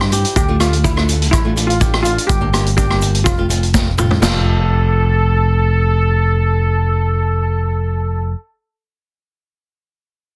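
Calypso in F major at 124 BPM, sunny and festive, cut from a longer piece: a shimmering steel pan played with hard rubber sticks carries the melody from 0.4 seconds over a fingerpicked flamenco guitar and a growly, up-front fingered electric bass, with chords moving from Dmadd9 to Gm and F. A punchy vintage drum kit with dark cymbals and soft clipping on kick and snare drives the first half alongside a grainy tube shaker in the background, ending with a drum fill at 3.7 seconds. At 4.2 seconds a roomy horn section with light vibrato enters on a second line, all set in light reverb under a dense, heavily limited modern master.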